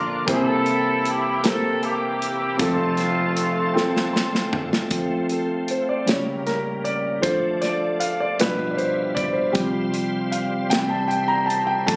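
A slow gospel sway in 6/8 at 52 BPM, this hopeful, uplifting excerpt in F major opens with a clear, tight horn section carrying the melody with slapback echo until 4.1 seconds, over a warm concert grand piano with deep bass and a bright, shouting tonewheel organ holding sustained chords through slow rotary speaker, light overdrive and chorus vibrato. A punchy, airy studio drum kit joins at 0.3 seconds, and a drum fill alongside a piano fill at 3.8 seconds leads into a grand piano solo from 4.9 seconds, moving through chords such as A7b9, Dm and G6 before settling from Csus4 to C. The whole has the light club reverb of a phone recording made in the room.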